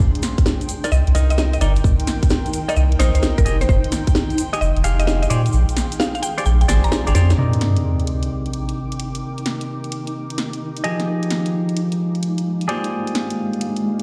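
UK garage two-step with a late-night, soulful mood, built on a round, deep dub sub bass, a tight electronic kick that drops out at 5.5 seconds, a cracking snare and hi-hat from the garage kit, a grainy tube shaker, twangy clean electric guitar stabs through a low-pass filter and dub echo that gets a filter sweep from 7.4 seconds, a woody, warbling mallet-like synth pluck melody, a breathy pad in the background and a cloudy, evolving granular pad, both pumping, and an electronic sub drop marking the move to the second section, all in a big bare-room ambience with large studio reverb.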